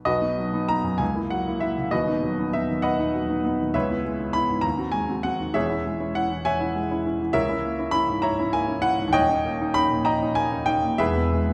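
An intimate, up-front grand piano with audible action noise plays a stormy yet bittersweet romantic character piece alone in B major, moving with rubato at 66 BPM in 6/8 through chords from B and F#7/C# to C#m7, A#m7b5/C# and D#7 before reaching E at 11.0 seconds, its range spanning D#1 to B5 within the wet reverb of a recital hall, in this short passage cut from a longer work.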